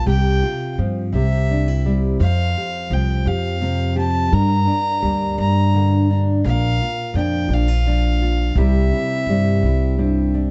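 Peaceful and hopeful, this short acoustic folk excerpt in a slow 6/8 at 56 BPM sets a nasal, reedy bowed fiddle melody over up-front fingerpicked steel-string guitar with audible finger squeak and a woody pizzicato upright bass, all three playing throughout a dry, dark production as the chords move from Csus4 through Fsus2, Gm and Bb back to C.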